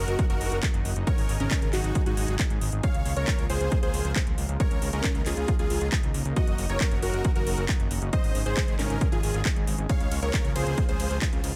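A dry, dense mix carries this soaring, uplifting trance cut at 136 BPM in Db major, where an overdriven, punchy electronic kick sits up front beside a fat sawtooth bass with a filter sweep, while an overdriven house kit adds handclaps, metallic hi-hats and ride cymbal. A huge, detuned supersaw lead with vibrato carries the melody through digital delay, shadowed by a lush, mellow unison pluck and a silky, chorused string pad in the background, with the bass, lead, pluck and pad all pumping against the kick. The chords cycle through Gb6, Absus4 and Db6, returning to Gb6 at 6.4 seconds.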